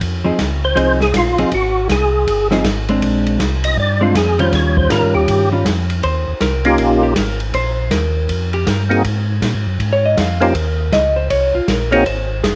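Swinging and bluesy, this soul jazz organ trio snippet rides a piping, lightly overdriven tonewheel organ bass line with chorus vibrato and a slow rotary speaker, under a smooth acoustic drum kit with dark cymbals, a boomy kick and a rolled-off top. Up front, a fat, percussive tonewheel organ carries the melody with key click and third harmonic percussion, while a clean, compressed hollow-body electric guitar accompanies. The organ solos from 0.0 to 6.0 s before the guitar takes the solo at 6.0 s, the trio framed by small-room ambience and light reverb.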